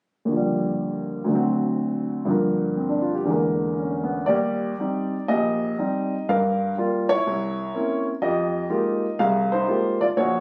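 Captured on a phone in the room, this brief cut from a longer piece has the compressed sound of a club, with moderate reverb adding a touch of space. It is a playful, relaxed solo jazz performance in E-flat major at 122 BPM in 4/4, swung on the eighth notes and played with a rubato looseness. A lone upright piano carries everything, its tone warm, woody, natural and placed up front, ranging from deep bass notes into the upper register. The opening phrase moves through rich harmonies such as Ebmaj9, D7, Gm7 and a colourful E7#11. From 4.3 seconds a second passage settles on Eb6 before turning through Gm7b5 and C7b9, coming to rest on Fm11 at 8.2 seconds as the piano plays on until 10.4 seconds.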